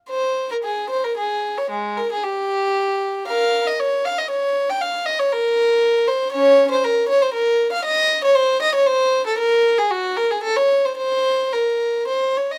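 In a flexible 3/4 at 116 BPM with uneven, rubato beats, this flowing and solemn excerpt from a baroque-style suite movement features a single unaccompanied violin playing from 0.1 to 12.6 seconds, ranging from Ab3 to G5 and settling into Bb minor from 6.3 seconds. The bowed violin has a period-style, gut-string tone that is nasal and reedy, with an airy bow sound. It sits close and up front in a moderate studio reverb.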